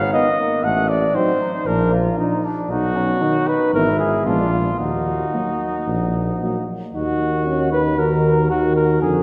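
Classical brass quintet music in Eb minor, this short excerpt moves at 116 BPM in a straight 4/4 with a heroic yet grave mood. The mellow cornet carries the melody up front, its smooth top touched with light vibrato, while the flugelhorn sings a second line from a more distant, roomy position. A warm tuba anchors the bass up front, and the French horn and trombone sit in the background as accompaniment, the trombone shaded with its own gentle vibrato. The harmony passes through a diminished chord and a flat-ninth dominant before settling on Eb minor at 4.8 s, and a new section begins at 7.0 s. A wet concert hall reverb with a long tail surrounds the ensemble, giving the whole quintet a spacious sound.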